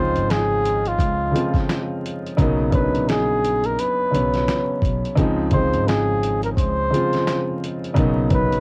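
An 86 BPM groove in 4/4, swung at 59% on the sixteenths, sets this nostalgic, dreamy lo-fi hip hop fragment in motion, with the dusty, sampler-style drum kit entering at 0.2 s. Its hi-hat, thumpy kick and fat snare sound compressed and gritty, re-recorded in a small room and placed up front. Beneath it, a pizzicato upright bass with steel strings adds a bright, growly low end, while an intimate upright piano with audible action noise, long sustain and a cassette tape coloring carries the harmony, drifting between C#maj9 and Bmaj9. Over the top, a close-miked solo flugelhorn plays the melody in a jazz style, whispered and breathy with a soft attack and light vibrato. Light reverb, vinyl crackle and the hazy character of a home cassette recording wrap the whole 8.6-second section, which is cut from a longer piece.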